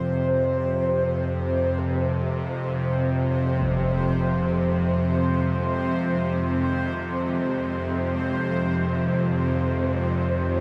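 Cavernous and desolate, this dark ambient drone drifts in free time through a vast, echoing space drenched in huge reverb. Up front, a tense, string-like drone with a bright, detuned sawtooth edge, a noise layer and ring modulation holds low sustained notes with slow attack, long release and vibrato. Behind it, a very quiet cello section plays soft, sul tasto chords with light vibrato, its close, intimate studio sound set against the surrounding space. A bubbling, resonant texture sits high above, its random filter steps shimmering with chorus and reverb. At 3.6 seconds a huge impact sounds in the background, muffled by a low-pass filter, in this brief excerpt from a longer piece.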